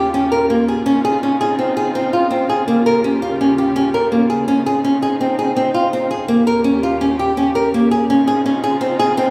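A nylon-string guitar and a string section begin together, the guitar's small, bright, fingerpicked arpeggios sitting up front with finger squeaks while the bowed strings hold soft-attack chords from a distance, their vibrato and portamento lending an expressive glow. This hopeful, shimmering contemporary chamber piece moves in 5/4 at 166 BPM in Db lydian, alternating between Eb9 and Dbmaj9 chords. A wet recital-hall reverb surrounds this 9.3-second excerpt, lifted from a longer work.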